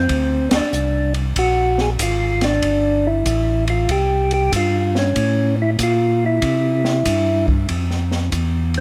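Soul jazz organ trio at 95 BPM in 4/4, swinging its eighths with a greasy, loping feel in this short excerpt cut from a longer piece. A percussive tonewheel organ carries the melody from C4 to G#4, its tone mellow, round, dark and clean with third harmonic percussion, sitting up front through a slow rotary speaker and plate reverb. A second tonewheel organ handles the bass from G1 to C3, warm, fat and lightly overdriven, with chorus vibrato, audible key click and its own slow rotary speaker. An acoustic jazz kit of hi-hat, kick, ride and snare enters at 0.1 s, sitting lower in the mix, with dark cymbals, a high-tuned snare and a boomy kick. The band hits an accent together between 0.4 and 0.7 s, and the harmony moves through G#7#11, Gsus24, A and C before the tonewheel organ takes a solo at 7.7 s over an F5 chord. A moderate large-studio reverb of 1.1 s gives the whole trio a roomy glow.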